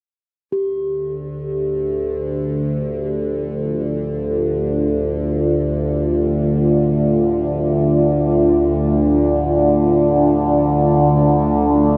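Vast and ominous, this dark ambient drone drifts in free time on a single D minor chord, tuned to A4 = 439 Hz, and is cut from a longer piece. A bronze singing bowl sounds first at 0.5 seconds, a soft, metallic ring struck with a felt mallet that sits in the background with a slow, meditative beating. At 1.0 seconds an overtone-sweeping drone enters from D2 to D3. It is a resonant blend of sawtooth and sine whose moving overtones shift over a slow attack and hang on with a long release, placed up front with chorus and its own reverb. A deep, moody pad joins at 2.5 seconds with sustained chords from A3 to D5, built from detuned unison sawtooths with sine, triangle and a sub octave beneath. The pad's dark, warm tone also carries chorus and built-in reverb. The whole recording sits in a huge, wet space with a 7.9-second reverb tail that turns the sustained layers into one vast, blended mass.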